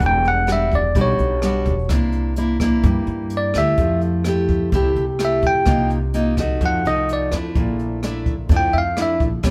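A romantic, sophisticated bossa nova in 4/4 at 127 BPM, cut from a longer piece and played by a band together in one room with a moderate large-studio reverb. A bell-like, bright tine electric piano carries the melody up front, sounding clean and direct as it solos from the start until about 9.2 seconds. Beneath it, a fingerpicked nylon-string guitar with fresh strings adds a bright, classical accompaniment that also sits forward in the mix. An upright bass played pizzicato gives a woody, growly low end, while a jazz kit played with brushes keeps time on hi-hat, rim click and a punchy kick. The harmony moves through rich extended chords, from Em9 and C9 to Fmaj9, then Cm7 and F7b9 before settling on Bbmaj7#11.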